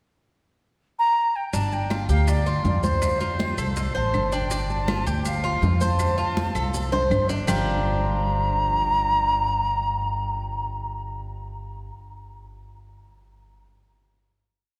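Cuban son in the guajira style, this short, complete piece moves at 162 BPM in G minor with a nostalgic, sultry mood, set in the long, wet reverb of a church or concert hall. An airy concert flute opens the pickup bar at 1.0 seconds with a tongued, expressive, motif-based melody full of vibrato, sounding distant yet up front. At 1.5 seconds the band settles into a montuno vamp over G5 and F. A bright, metallic Cuban tres picks an arpeggiated guajeo on double strings, some doubled at the octave. A woody, thumpy pizzicato upright bass plays a tumbao that anticipates the chords. Tight, high-tuned bongos in steady eighths with hand bell sit in the background, alongside thin-skinned congas with slaps and open strokes and grainy maracas, while dry, close claves join at 1.9 seconds tapping a two-bar time line. After a drum fill the percussion stops at 7.6 seconds, and the flute, tres and bass ring out on a final Gm7.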